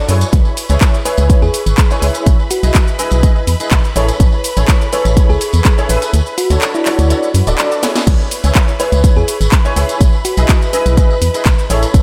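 A straight groove drives this energetic, bittersweet piano house cut, with a punchy, layered electronic kick up front, a cracking snare, handclaps, hi-hat, shaker and crash from the house kit, and a vintage, band-limited tambourine tucked in the background. The kick drops out from 6.1 to 8.1 seconds, and a drum fill at 7.8 seconds leads back into the full beat. Underneath, a hollow, dark, organ-like FM bass sits prominently in the mix and pumps against the kick. A clear, intimate baby grand piano plays the central riff with audible action noise, treated with ensemble chorus, analog delay and the same sidechain pumping. In the background, a rich, lush studio violin section holds pumping sustained chords with vibrato and a smooth top, while a round, tine-like synth pluck with a gentle warble and cassette-tape character adds a soft melody. The harmony moves through C#m7, Emaj7/B, Amaj7 and Dmaj7 before returning to C#m7 and Emaj7/B, all set in a dreamy mix soaked in lush hall reverb.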